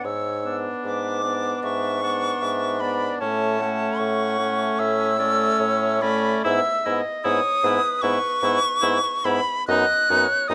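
A bright silver concert flute carries the melody up front, its airy, metallic tone shaded with vibrato and a soft attack, sitting high above the ensemble in this tender, warm slow romantic movement for wind quintet. Beneath it, a clear oboe sings a second line with light vibrato, while the clarinet and a distant, roomy French horn supply accompaniment, and the bassoon anchors the bass up front. The pulse is a slow 76 BPM in 4/4, played with a rubato that lets the phrases breathe. The harmony begins in A major and moves toward E major from 6.5 s, passing from an E13 over G# to A, then E over G# and B over F#. All five instruments play throughout this 10.5-second fragment cut from a longer piece, captured by close, detailed microphones with a light reverb.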